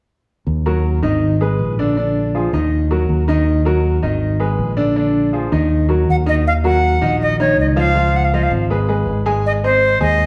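A reedy silver concert flute stands out, entering at 6.1 seconds with an airy, crisp-attacked melody in a straight tone that sits up front over this fiery, passionate Latin excerpt. Beneath it, a fingered electric bass gives a dark, round, amped foundation from 0.5 seconds, while a brilliant grand piano supplies bright accompaniment from 0.7 seconds. The harmony moves through a minor-key cycle of Ebm, Abm and Bb7 before shifting in the second section to Ebmadd9, Db7 and Ab, shortly after the flute takes the lead. The straight 4/4 feel moves along at 160 BPM. A wet, large studio reverb places the listener further back in the room, lending the close, direct instruments a spacious glow. The passage is cut from a longer piece.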